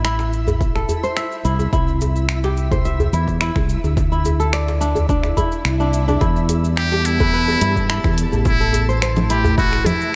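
The rhythm moves at 107 BPM in a straight 4/4, with a punchy, layered electronic kick working alongside a deep house kit of cabasa, congas, finger snaps and hi-hat, while a tight, cracking djembe played with hard hands adds acoustic snap from a small room. This excerpt of organic downtempo feels warm and earthy, built over a progression of Am, C, Dsus2, Em and back to Am. A crisp, ringing kora spins fingerpicked arpeggios through delay, and a dark, round fretless electric bass sits up front with a sidechain pump. Twinkling granular shimmer glints in the background, and around 5.3 seconds a faint electronic swell rises as the kick briefly drops out. At 6.7 seconds a warbling, nostalgic pad with lo-fi, detuned chorus sustains chords beneath, and at 6.8 seconds a buzzy, brilliant trumpet with a metal mute takes a jazz-style solo melody with light vibrato, echoed by delay, all within light digital ambience.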